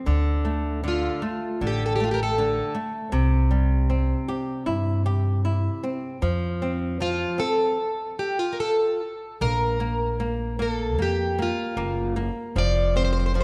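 Light reverb and a faint mains hum surround this short cut from a longer piece, a nostalgic, tender fado-style ballad in F major that moves at a rubato 77 BPM in 4/4. A fingerpicked flamenco guitar, warm and marked by finger squeak, plays accompaniment alongside a thumpy pizzicato upright bass with gut strings. At 0.9 s a picked, plugged-in twelve-string acoustic guitar takes the melody, its dark, boxy tone and old strings shimmering with octave doubling as the harmony moves from Dm through C and F to Bb5 at 9.4 s.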